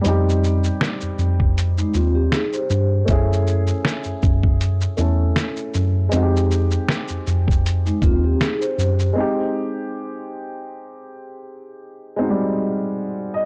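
This nostalgic, hazy lo-fi hip hop excerpt in F minor opens with a dark, woody upright piano and a compressed, pitched-down sampler drum kit, set to a lazy 79 BPM swing in 4/4. The kit brings a thumpy kick, a medium-tuned snare, hi-hat, shaker and finger snaps, all muffled and tape-warm up front. Just after, a clean, mellow tine electric piano takes the bass role low in the mix's foreground, driven by tube saturation. At 1.8 seconds a soft-mallet vibraphone adds a brief, metallic, ringing second line through a low-pass filter and tape echo, returning near the end of the first section. The harmony moves from Fm9 to Gbm9 and back, and at 9.1 seconds the drums and bass stop, leaving the vintage, cassette-tinged piano alone on a rootless Fm9. The whole recording sounds dry and gritty, with little reverb.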